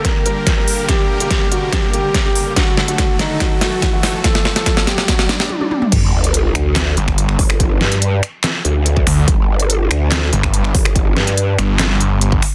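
A half-time 4/4 groove drives this aggressive, menacing slice of heavy wobble dubstep, cut from a longer piece, with a punchy, overdriven electronic kick and a dubstep kit of deep snare, crisp hats, handclaps, finger snaps, toms and crash running throughout. The build-up pairs a soft, mellow felt-muted upright piano melody, dulled by a low-pass filter and echoed by digital delay, with huge, lush supersaw chords pumping under sidechain, while a riser and sub drop sit in the background and a drum fill leads in. At 5.9 seconds the drop hits with a wobbling, formant-filtered growl bass, joined from 7.0 seconds by a snarling, resonant sawtooth bass with a moving notch, both up front in a dense, heavily limited mix with light reverb.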